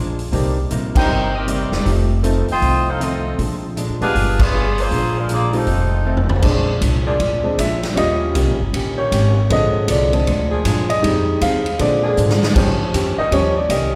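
Big band swing at 157 BPM in 4/4, this brassy, energetic excerpt from a longer piece sits in Bb mixolydian with a firm swing on the eighth notes. A woody, growly pizzicato upright bass and a clean, picked hollow-body archtop guitar, kept in the background, run through the whole passage, while a roomy, distant drum kit with dark cymbals, a medium-tuned snare and a punchy kick drives the band. A clear, natural grand piano accompanies from the start. A tight saxophone section, up front with light vibrato, carries the melody from 1.0 seconds over chords moving through Cm7, F7, Bb7 and G7b9, punctuated by band accents and a drum fill. At 6.4 seconds the piano takes a solo over a Bb7, Eb7 and Fm7 progression, and from 7.1 seconds a second, softer-attacked saxophone section with a smooth top holds sustained chords behind it, with another drum fill along the way. The whole band sounds as though it plays in a church or concert hall, bathed in a long, wet reverb.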